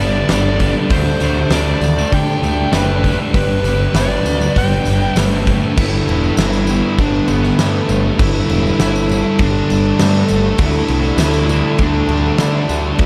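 Soaked in vast ambient reverb and tape saturation, this dreamy, wistful shoegaze and dream pop excerpt layers a dark, chorus-thickened fuzz guitar riff and a very quiet overdriven electric guitar riff beneath a fuzz lead guitar melody trailed by analog delay, while a mellow French horn section holds sustained chords in the background, a growling overdriven picked bass anchors the low end, a jingly tambourine sits close and dry, and a huge arena drum kit with a punchy kick, fat snare and bright cymbals enters at 0.3 seconds.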